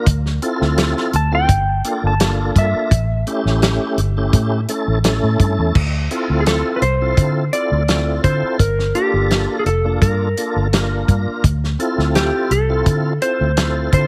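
A clean lap steel guitar opens this brooding, mournful straight-eighth soul blues in D minor at 84 BPM with a slide solo over the first 5.8 seconds, backed by an up-front, lightly overdriven tonewheel organ with slow rotary speaker and chorus vibrato, a dark, round, foam-muted vintage electric bass and a dry soul drum kit with a fat snare, tight kick, hi-hat and crash, all moving through Dm9, Gm9 and A7 in a small room with light reverb.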